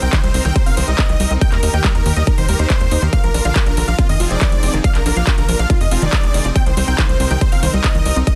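Uplifting trance at 140 BPM in a straight 4/4, this short cut from a longer piece feels driving and bittersweet, moving through Cm7, Eb, Bb and Fm7 before returning to Cm7 at 6.6 seconds. A huge, detuned supersaw carries the melody between F4 and G5, its thick sound given vibrato, compression and tape echo, while a slow-attack supersaw pad sustains chords behind it. In the background, a lush unison pluck spins arpeggios with a short decay and its own tape echo. Underneath, a tight sequencer bass with a filtered, punchy attack drives the low end. A big-room dance kit of handclaps and metallic hats plays from the very start, and a punchy electronic kick sits up front from 0.1 seconds. Sidechain pumping makes the synths, bass and hats breathe with the beat. The digital ambience and dense, heavily limited master give the whole a loud, modern sheen.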